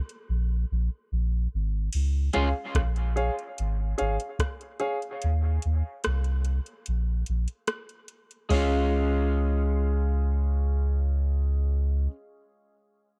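Dub reggae with a spacious, hazy mood, cut from a longer piece, where a soft vintage rhythm box with deep kick and metallic hats sits up front beside a round, mellow sub bass, while a twangy electric guitar at the edge of break-up and a clear, polished grand piano playing stabs both ring with dub echo in a dry, close 1970s-style studio sound, the opening break giving way at 1.9 seconds and the kick dropping out from 5.2 to 8.5 seconds.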